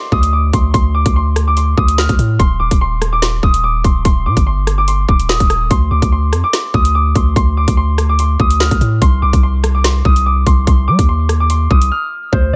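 A Celtic harp opens this drill excerpt, its ringing, fingerpicked melody softened by a low-pass filter and trailed by tape echo, sitting high in the register from C5 to F6. Almost at once a drill drum kit and a long sustained 808-style bass join, the kit electronic and produced with a hard-clipped kick, woody snare, rim click and metallic hi-hats, all placed up front. The bass is deep and sine-like, with a fast attack and a mellow, decaying tail that reaches down to Eb1. At 145 BPM in 4/4 with a half-time feel, the mood is ominous and tense, moving through Dm and Eb, a stretch with chords dropped away, and then Cm. A brief break arrives at 11.9 seconds, and the hi-hats cut out at 12.3 seconds as the clip ends, all set in a digital ambience.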